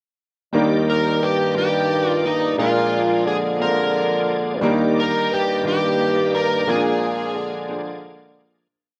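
An overdriven slide guitar sings the melody up front in this short, jubilant and soulful gospel piece in Eb major, a slow 6/8 at 59 BPM, with a rich, reedy string section carrying a motif-based melody in the background from 0.9 to 8.0 seconds. Beneath them a mellow bassoon plays a slow gospel bass line with slides and light vibrato, a brilliant baby grand piano marks quarter-note chords with grace notes, and a shouting tonewheel organ with slow rotary speaker and chorus vibrato holds chords over a very quiet, dark French horn pad. The rough home-demo mix sits in a small room with light reverb, moving between Ebmaj7 and Bb7 before fading out from 6.7 to 8.7 seconds.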